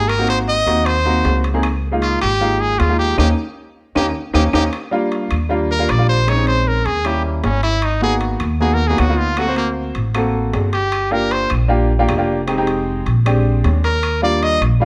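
Sunny and lively, this 155 BPM Afro-Cuban jazz excerpt from a longer piece sets a brilliant, punchy trumpet with light vibrato and scooped notes up front over clear grand piano, woody pizzicato upright bass, ringing metal-shell timbales and very quiet, distant claves, with a band accent and drum fill leading into a forceful trumpet solo from 4.7 s as the harmony settles into Eb major, all heard through light reverb and the warbling pitch drift of worn cassette tape.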